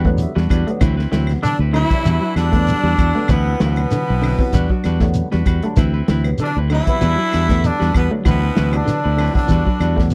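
A dry, close 1970s-style studio sound frames this hypnotic, joyful afrobeat groove, cut from a longer piece. A dark soul drum kit with a punchy kick, a round, up-front fingered bass, a grainy shekere and woody claves in the background support a barky tine electric piano, lightly overdriven and phased, which opens with a fill over alternating Em9 and D13 chords, while a clean semi-hollow guitar plays stabs and a twangy guitar at the edge of break-up lays out arpeggios further back. From 1.4 s a brilliant, distant trombone carries the melody through tape echo, and a gritty, raspy baritone saxophone plays a second line, joined at 1.5 s by a raspy tenor saxophone.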